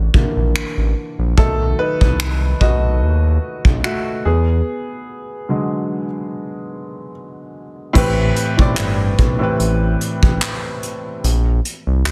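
Late-night and full of longing, this contemporary R&B fragment moves at an unhurried 73 BPM in 4/4, with a light swing on the sixteenths and a home in A dorian. An intimate grand piano carries the opening as a solo, its natural tone close enough that the action noise of the keys can be heard, and it moves through altered and rootless dominant colors before settling on an Am9 at 8.0 seconds. Beneath it, a smooth synth bass blends sawtooth and square-wave tones into a saturated, evolving sound with a fast attack, sustained notes and vibrato. A soft brush drum kit in an acoustic studio room supplies a punchy kick, hi-hat, finger snaps, handclaps and crash cymbal, with a touch of soft clipping on the snare, and a break arrives at 4.7 seconds. The piano drops out at 11.3 seconds, leaving bass and drums to close the passage, all presented with little reverb in a dense, heavily limited modern master.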